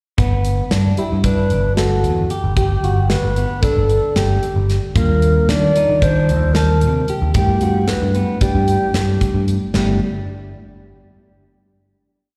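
A straight 9/8 groove from an up-front acoustic drum kit with bright cymbals and a tight kick drives this bright, driving progressive instrumental, as a growly, punchy picked electric bass plays a syncopated riff, a dark, clean semi-hollow guitar repeats an arpeggiated ostinato with spring reverb and slapback echo, a reedy, airy alto flute enters at 1.0 s with arch-shaped motif phrases, and a worn, slightly out-of-tune, lightly overdriven tine electric piano with lush chorus joins in the background at 4.9 s on held rootless chords, the band heard through a venue PA in recital-hall reverb before a final chord at 9.7 s.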